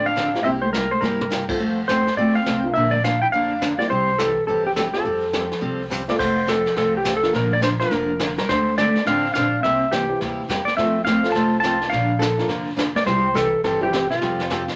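Down-home, cheerful western swing country with a twangy, up-front clean lap steel carrying the melody over a bowed cello second line, bright picked dreadnought acoustic guitar, mellow slightly detuned upright piano, woody pizzicato upright bass and a vintage brush kit with dark cymbals and a punchy kick that plays fills at 1.0 and 5.9 seconds, all set in a small room reverb.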